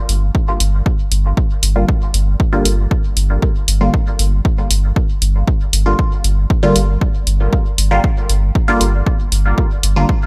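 A muted, detuned sawtooth chord stab, shaped by a moving notch filter, phaser, cassette-tape colour, sidechain pumping and dub echo, enters at 1.8 s over a clean sine sub bass pumping on G1, a punchy analog kick and a tape-warm hi-hat in this meditative, deep dub techno excerpt in G minor at 117 BPM, set in a dry, echo-heavy mix.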